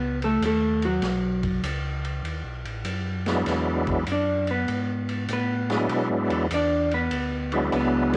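Soul jazz organ trio in a soulful, bluesy swing, cut from a longer piece, where a clean, picked hollow-body electric guitar sits up front over a round, mellow organ bass turning through a slow rotary speaker and a vintage kit with dark cymbals and a punchy kick, joined at 3.3 s by a thick, lightly overdriven percussive organ melody, over a B9 to E9 change in a small room with the character of a home cassette recording.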